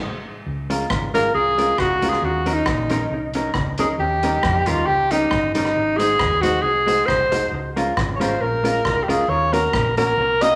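A wet, roomy studio sound frames this bouncy, upbeat ska clip, cut from a longer piece, with a lightly swung 4/4 feel. A brief band accent opens it before a clear alto saxophone takes an up-front solo from 1.1 seconds, its smooth top and vibrato giving the line a pop-style sheen. Underneath, a hollow-body jazz guitar plays dark, clean, compressed accompaniment touched with tape echo, while a short-scale hollow-body electric bass adds a round, amped low end from 0.5 seconds. A street-band drum kit, airy and big in the room with a boomy kick, keeps time on hi-hat, kick and rim click. The harmony moves through Db6, Ebm7, Eb7 and Ab7 before circling back, and the saxophone sits clearly above the rest of the band.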